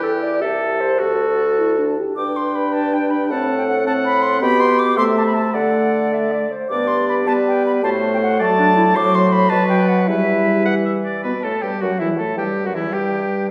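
This is a quick, cheerful classical-period movement for wind quintet, moving at 106 beats per minute in a spirited, straight 6/8, set in G major before turning toward E minor from 9.0 seconds. The concert flute carries the melody with a pure, straight, tongued tone, while the bright oboe, touched with light vibrato, sings a second line just beneath it. Underneath, the mellow clarinet with its smooth top and the French horn, soft in attack with vibrato and placed close and up front, fill in the accompaniment. The bassoon anchors the bass with a warm, vintage colour and light vibrato. All five instruments play throughout this 13.5-second passage, which is cut from a longer piece and heard from further back in a wet recital hall with a generous reverb tail.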